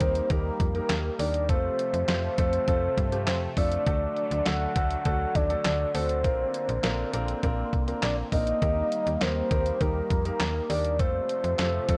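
Synth-pop in Bb major at 101 BPM, this upbeat, bright 12-second excerpt runs from start to finish with a soft, octave-layered synth lead carrying the melody, its round, sub-octave tone treated with chorus, tremolo, vibrato and analog delay, over a warm grand piano, a swirling phased analog pad sitting in the background, and a snappy FM bass with a metallic attack. A detuned 8-bit drum machine sits up front with a thumpy kick, medium-tuned snare, hi-hat and handclaps, while the chords move through Eb, F, D and Bbadd9. The whole recording wears light reverb and a worn cassette character with warbly pitch drift.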